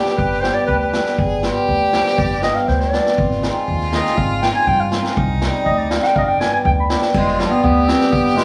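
A straight two-beat pulse in 2/4 drives this short, bittersweet and soulful klezmer fragment, cut from a longer piece. A mellow, vintage-toned clarinet carries the melody as a classical-style solo through to 7.1 seconds, bathed in plate reverb, while a clear, smooth violin with vibrato bows an even second line. The hammered cimbalom supplies shimmering, ringing accompaniment, and a woody pizzicato upright bass anchors the low end. A street-band drum kit with dark cymbals, a boomy kick and a medium-tuned snare sits mid-forward with a rolled-off top, and adds a brief fill at 2.7 seconds. The harmony moves from G through Ab and C minor back to G, and a new section begins at 7.1 seconds, all set in a small room with moderate reverb.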